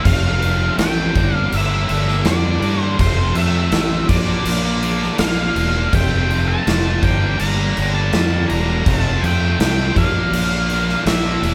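A band playing live in one room with light reverb opens this dark, angsty 82 BPM alternative rock fragment, cut from a longer piece and moving through F, Gm and Bb in a straight 4/4. A dark, picked octave-fuzz lead guitar carries the melody over a double-tracked, scooped high-gain riff guitar that sounds bright and heavily distorted, both starting at 0.0 s. From 0.1 s a growly, punchy fuzz bass sits up front with a big acoustic kit whose punchy kick, medium-tuned snare and bright crash fill a large room.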